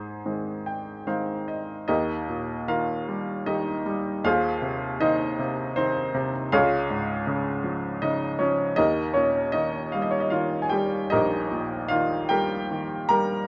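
A clear upright piano carries this short, lyrical classical passage alone, its woody, intimate tone sitting up front with audible action noise close to the ear. The mood is calm and tender, moving at about 78 BPM in 3/4, though the beats are uneven and the playing leans into rubato. The piano covers a span from Bb1 to Bb5, opening on an Ab chord with a brief fill from 0.3 to 1.9 seconds before a new section begins at 1.9 seconds on Eb. From there the harmony moves through Ab/Eb, Db and back to Eb as the phrase unfolds. The instrument is tuned slightly high, and a light reverb surrounds it along with a faint mains hum. Cut from a longer piece, the fragment runs for 13.5 seconds.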